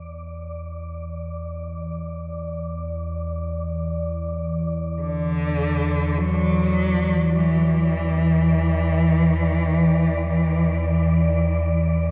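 Soaked in a vast cathedral reverb with a dark production, this cavernous ambient fragment in free time, tuned to A4 = 438 Hz and cut from a longer piece, fades in a deep, ominous rumbling drone with phaser alongside an airy, breathy wind-like tuned noise layer over a Dsus2/E colour, until a rich, expressive bowed cello enters up front at 5.0 s with vibrato and portamento, trailed by a diffuse ambient delay.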